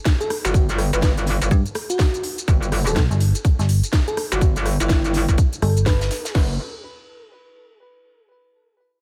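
Gritty, aggressive bass house at 124 BPM in 4/4 with a 16th-note swing, cut from a longer piece and opening straight into a drop. Two layered electronic garage kits come in at 0.1 s: the louder one, up front, carries a tight kick, cracking snare and crash, while the other adds crisp hats, rim click and shaker. Both have a tape-warm character and were re-recorded in a large room, and a very quiet acoustic studio kit with a medium-tuned snare and rolled-off top sits beneath them. A bell-like, sparkling FM electric piano plays a mellow melody between E4 and B4, colored by chorus, tremolo and tape echo. A metallic wobble bass enters at 0.4 s, bright, saturated and pumping against the kick, with overdrive and chorus. At 1.5 s a digital, decaying FM bass with tube saturation joins it. The mix is dry, with little reverb.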